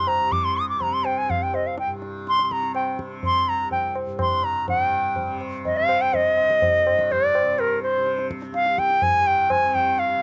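Set in a straight 3/4 at 124 BPM, this solemn, longing fragment of Hindustani classical music in raga Darbari on C features a bright, reedy bansuri carrying the melody up front from Bb4 to Eb6 with tongued notes and vibrato, over a mellow, buzzing tanpura drone and high-tuned, ringing tabla entering at 0.1 seconds, all heard dry in an open-air setting, with a new section arriving at 4.7 seconds.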